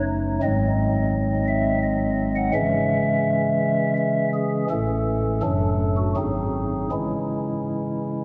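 A soft, hollow stopped-flute pipe organ plays alone and up front, its mellow baroque voicing carrying a touch of chiff and a tremulant, in this dark, grave classical chorale-style fragment cut from a longer piece. At 84 BPM in 3/4 and C# minor, the organ spans F#1 to F#5 as the harmony moves from G#7 to C#m, through A and D/F#, and back to G#7 before settling on C#m at 6.9 seconds. A wet church reverb with a long 3.0-second tail surrounds the sound, and worn cassette tape adds a warbly pitch drift.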